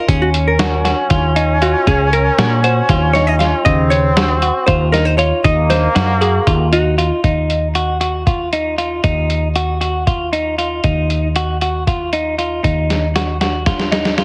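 Straight eighths drive a brisk 7/8 at 234 BPM in this brooding progressive instrumental, cut from a longer piece in Eb dorian. A muffled, sampler-style drum kit sits up front with a thumpy kick, a medium-tuned snare and hi-hat, and its tape-warm character suggests re-recording in a small room. A woody, round fretless bass holds the low end throughout. A clean, picked semi-hollow electric guitar plays arpeggios through spring reverb and digital delay. A dark, fingered hollow-body jazz guitar takes a solo in its upper register until 7.2 seconds, while a distant, nasal trombone with a straight mute adds a second line with vibrato until 6.9 seconds. The harmony moves from Gb to Ebmadd9, a drum fill arrives at 12.9 seconds, and the whole mix carries a light reverb and a heavily compressed, radio-like sound.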